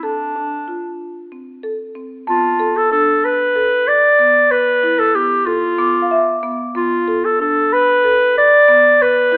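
A distant, roomy clarinet carries the classical-style melody up front, while a mellow, woody marimba with soft mallets plays arpeggios beneath it in this hypnotic, urgent piece of contemporary chamber music in 7/8. At 2.3 seconds a large celesta enters with a delicate, bell-like texture, high above the other two as the harmony shifts from Dm7 to Dm6. The whole recording sounds worn and warbling, like old cassette tape with drifting pitch and a thin telephone quality, softened by light reverb, and this snippet is cut from a longer piece.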